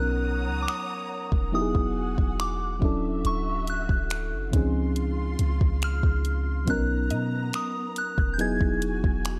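A dark, dreamy production in digital ambience carries this smooth contemporary R&B excerpt at 70 BPM in B major: a round, soft FM electric piano with chorus plays chords under a pure, gentle synth bell melody treated with chorus and tape echo, lush bowed strings with vibrato sustain chords with sidechain pumping, a deep, boomy 808-style bass sits up front, a soft electronic drum kit of finger snaps, hi-hat and kick enters at 0.7 s, and a woody, bright mallet-like pluck with tape echo appears in the background at 7.1 s, all over chords moving from Bmaj9 through Emaj9, Dmaj9 and C#maj9.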